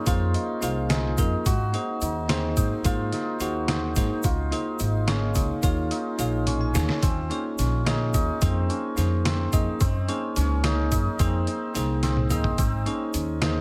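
A bell-like tine electric piano and a shimmering hammered dulcimer open this tense, driving excerpt of progressive instrumental band music in 5/8 at 216 BPM in Eb dorian, joined at 0.1 s by woody pizzicato upright bass, a gritty, compressed, pitched-down trip hop drum kit with a thumpy kick, and a grainy egg shaker in the background, while electric piano fills and drum fills around 6.5 s mark the repeat of the theme over chords moving from Fm7 through Dbmaj7 and Gb in a small, lightly reverberant room.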